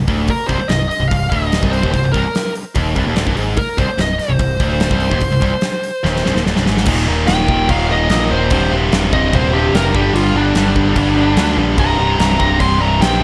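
A high-gain distorted guitar riff leads off this aggressive, menacing hard rock excerpt in C minor, joined by a scooped high-gain guitar sitting in the background and a growly, punchy picked electric bass, with a gated 80s drum kit entering at 0.1 seconds. The drums sound big and polished, with a fat snare, a punchy kick, bright cymbals and an airy gated room around crash, hi-hat, kick and snare. Moving at 146 BPM in a straight 4/4, the rhythm section sits under a high-gain lead guitar that comes in at 0.3 seconds, its distorted line ringing through digital delay high above the low riffing. A drum fill from 6.0 seconds sets up a shift to E-flat, where the lead breaks into a solo over changes that move through G5 and back to C5. Light reverb and small room ambience frame the whole, and the piece is cut off mid-flow.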